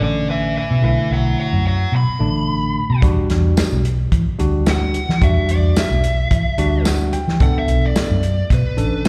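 A brooding, mournful soul blues opens with an overdriven lead guitar from a small cranked amp carrying the picked melody, tinged with slapback echo. Beside it, a clean tine electric piano heard through a combo amp supplies accompaniment with its own slapback echo, while a dark, round, foam-muted fingered electric bass sits punchy and up front beneath them. At 3.0 seconds a warm soul drum kit joins with tight kick, medium-tuned snare, hi-hat and tambourine, its acoustic sound smooth and close. The electric piano steps forward with a fill from 6.3 to 7.4 seconds, leading into the harmony's return from Em9 to Bm9 at 7.4 seconds. The sound is that of a live gig heard through the venue's PA, with recital hall reverb, in this brief cut from a longer piece.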